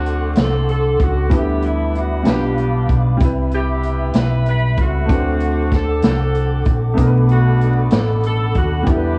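Slow gospel in a swaying 6/8 at 64 BPM, soulful and hopeful, this short excerpt has a warm, tightly voiced saxophone section carrying the melody with light vibrato, analog delay and plate reverb, over a clear, slightly worn grand piano and a soft, flute-like tonewheel organ holding chords with chorus vibrato, key click and a stopped rotary speaker. A round, dark hollow-body electric bass and a punchy big-band drum kit of hi-hat, kick and snare sit up front, with the drums entering at 0.1 s. The harmony moves from D7 through G6/D, G7/B and Cmaj7, returns to D7 and then settles on Bm7, and the whole mix carries the warble, pitch drift and vinyl crackle of old cassette tape.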